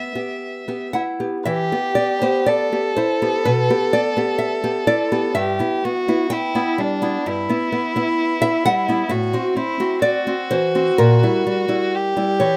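Romantic duo for violin and classical guitar in E minor, this solemn, yearning excerpt moves at a slow, rubato 56-66 BPM in 4/4, with a rich, smooth bowed solo violin carrying the melody with vibrato over fingerpicked nylon-string guitar accompaniment that sounds small and intimate with audible finger squeak, both up front in a close, detailed and nearly dry recording, as the harmony darkens from E minor toward diminished colour around 11.0 seconds.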